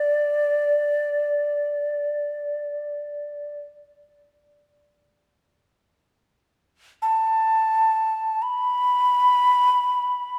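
A solitary shakuhachi, airy and mellow with a straight, tongued tone sitting up front, plays alone through this meditative fragment of Japanese traditional chamber music, stating a phrase and repeating it from 5.5 s within the D5 to B5 range, all wrapped in a moderate church reverb that lingers for about 2.5 s.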